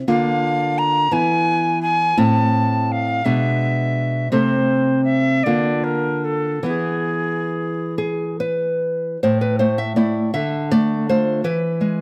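A romantic duo for alto recorder and nylon-string guitar in A minor, this solemn, melancholic fragment of a longer piece moves in a slow, rubato 6/8 at 46-58 BPM, with the recorder's airy, straight-toned wooden melody and crisp chiff carrying the line up front until 8.0 seconds over the fingerpicked guitar's small, squeaky accompaniment, which continues alone through a shift at 9.2 seconds to the final E chord, all set in a moderate recital hall reverb captured closely and in detail.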